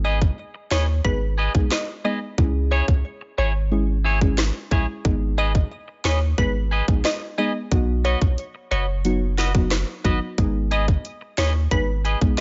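Bouncy and hypnotic, this dancehall groove in G# minor moves at a straight 90 BPM in 4/4, tuned slightly flat to A4 = 437 Hz, cycling through G#m, C#m and B under a digital ambience that keeps the top end dark. A glassy, crystalline wavetable pluck carries the melody through chorus and digital delay, while a soft, warbling vintage chord stab with a filter sweep supplies accompaniment and a clean, twangy electric guitar picks bright arpeggios. Up front sit a punchy sine sub bass with a pitch-drop attack and an electronic island pop drum kit, entering at 0.2 s with a tight kick, sharp snare, rim click and hi-hats re-recorded in a large room.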